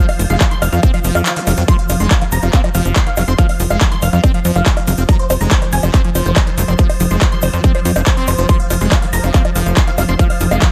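A punchy, layered electronic kick sits up front in this hypnotic, alien psychedelic trance excerpt at 141 BPM in straight 4/4, set in F phrygian; it enters at 0.4 seconds and drops out briefly from 1.3 to 1.7 seconds while a very quiet electronic swell and zap passes through. Beneath it, a tight, driving sequencer bass with a sawtooth and square-wave edge, ring modulation and a plucked filter carries the low end, joined by a squelchy, resonant acid bass riff in the background, colored by chorus and tape echo. A detuned unison supersaw stab plays a mellow, plucked melody with a moving notch, phaser and digital delay, while a swarming, evolving granular drone with a slow attack holds a sustained F3 behind it in its own reverb. The big-room dance kit adds bongos, handclaps and metallic hi-hats, and a grainy, close egg shaker ticks along very quietly. The kit and kick share studio ambience, sidechain pumping breathes through the stab, drone and acid bass, and a digital ambience surrounds the whole mix.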